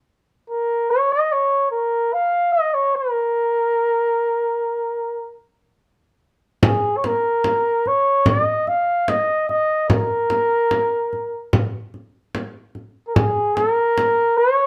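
A bucket-muted trumpet carries the melody from 0.5 s, its dark, veiled tone shaded with light vibrato and played solo in a classical manner, set close yet with a distant, roomy air as it moves between Ab4 and F5. This Mongolian folk excerpt unfolds at a solemn, windswept 73 BPM in straight 4/4, in a Bb yu mode under light reverb. At 6.6 s a small, bright frame drum enters up front in the second section, sounding in a small room until 14.2 s, while the trumpet continues to 14.7 s.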